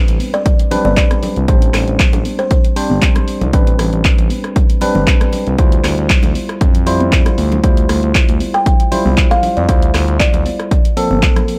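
A digital ambience surrounds this late-night deep house excerpt, where a tape-warm, punchy electronic kick sits up front alongside a small-room analog drum machine of handclaps, hi-hat and rim click, with acoustic congas pumping in the background under a swung 16th-note feel. A clean tine electric piano, heard through a combo amp with tape echo, plays pumping stabs over minor eleventh chords, the last of them voiced rootless, while a smooth, wave-folded synth bass glides with portamento and vibrato beneath. A buzzing, woody kalimba carries the melody from 0.3 to 3.1 seconds and returns at 8.5 seconds, its mellow fingertip plucks trailed by tape echo.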